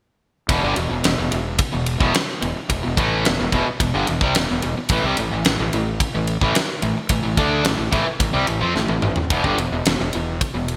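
Glossy 1980s-style digital production with a lush hall reverb frames this menacing, aggressive hard rock excerpt at 109 BPM in E minor, where a bright, double-tracked, overdriven electric guitar picks a riff up front over a growly, fuzz-soaked fingered bass, moving from Em to A5 at 4.9 seconds and back to Em at 9.3, while a big acoustic drum kit with a fat snare, punchy kick, ride cymbal and toms, drenched in gated reverb, pounds up front alongside them and breaks into a fill at 8.8 seconds.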